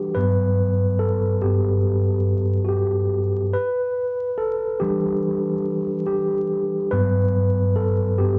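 Cosy and mellow, this short cut from a longer hip hop piece drifts along at 71 BPM in 4/4, with a lazy 16th-note swing and a home in G major. A lone tine electric piano carries the whole 8.4 seconds, sitting up front with a clean, warm tone that sounds as if it is coming through built-in speakers. Its voicings span from G2 to B4, moving from Gmaj7 to Em7 at 3.5 seconds and settling back on Gmaj7 near the end. Cassette tape colouring and a low-pass filter soften the piano's edges, while a wet small-room reverb gives it a close, intimate space. The production is dark, with vinyl crackle beneath and nothing reaching above 7.7 kHz, giving the sound a dusty, late-night haze.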